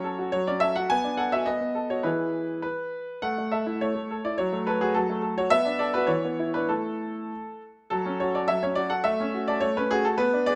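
A solo concert grand piano opens on an F-sharp minor chord in this short cut from a longer classical-period sonatina, its tone clear and placed up front. The mood is elegant and serious, and the playing follows a duple metre with a flexible rubato feel that lets the phrases breathe. The harmony moves through B minor seventh and B7 to E before settling on A, then circles back through F-sharp minor, B minor seventh and E to rest again on A. At 7.9 seconds a new passage begins, returning to F-sharp minor and ending over an A in the bass as the recording stops at 10.6 seconds. Staying between E3 and G#5, the instrument has a deep bass and an open character, captured by close, detailed microphones with light reverb.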